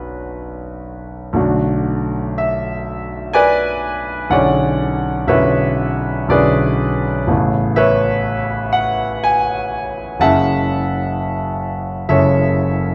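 A clear concert grand piano, set up front with deep bass and an open tone, carries this wistful, nocturnal impressionist solo in 3/4 with uneven, rubato beats. Cut from a longer piece, it drifts from Bmadd9 through Bm7, E13/B and Aadd9 before arriving at F#m9 at 10.2 seconds. A moderate recital-hall reverb and dark production give the 12.9-second passage a late-night air.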